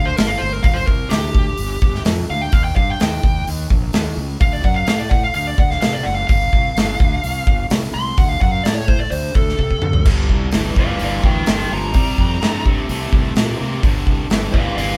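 Blues rock and southern rock in the power-trio mold, this gritty, smoky excerpt moves at 127 BPM in G minor, opening with a dark, overdriven lead guitar solo over a round, fuzzed fingered bass and a big, up-front acoustic drum kit with a punchy kick and medium-tuned snare. A drum fill at 9.6 seconds leads into a new section at 10.1 seconds, where a bright, double-tracked distorted rhythm guitar enters with a picked riff. The band sounds as if it is playing live together in one room, with light reverb.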